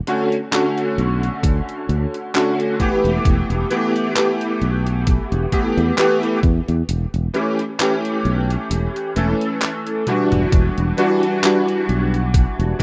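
Woozy and melancholic, this vaporwave fragment drifts at a slow, lightly swung pace, underpinned by a bright, clangy electric grand piano accompaniment smeared with ensemble chorus, gritty vintage sampler crunch and tape echo, moving through jazzy seventh and ninth chords. A detuned 8-bit drum machine ticks out handclaps, hi-hat and toms from the start, a round, dark fretless bass enters at 1.0 seconds, and a thumpy electronic kick arrives at 1.4 seconds, drops out from 6.9 seconds and returns after a short drum fill. The whole thing sits in a small room with a rough home-demo feel.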